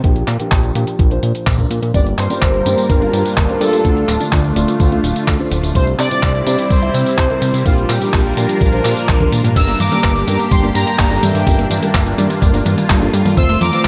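Melodramatic and bittersweet, this italo disco cut from a longer piece moves at 126 BPM in G dorian, with a thumpy electronic kick, a clean 12-bit drum machine of handclaps, hi-hat, tambourine, toms and crash, a fat, detuned analog bass and dark, boxy grand piano stabs in the background running from the start. At 1.9 seconds a bold, brassy analog synth lead with vibrato and a lush, phased unison pad holding chords enter, and after a drum fill a very quiet, round analog pluck adds arpeggios from 9.6 seconds as the harmony settles on Gm before closing on F. The dreamy mix is soaked in plate reverb, with diffuse ambient delay trailing the piano, bass and brass.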